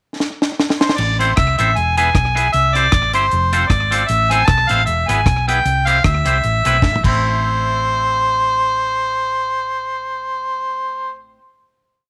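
A ska beat with a side-stick backbeat drives this short, energetic instrumental at 154 BPM with a light swing, as a dark, high-tuned reggae kit with slapback echo plays a fill from 0.2 seconds and stops at 7.1 seconds, after another fill from 6.8 seconds. A round, punchy hollow-body bass with tube saturation walks beneath with slides and chromatic approach notes, while a clean, twangy electric guitar chops the off-beats through a minor-key cycle of A minor, E, C and F. Up front, a mellow, vintage harmonica with light vibrato and scooped notes states short call-phrase motifs, all set in light reverb through to a final hit at 7.2 seconds.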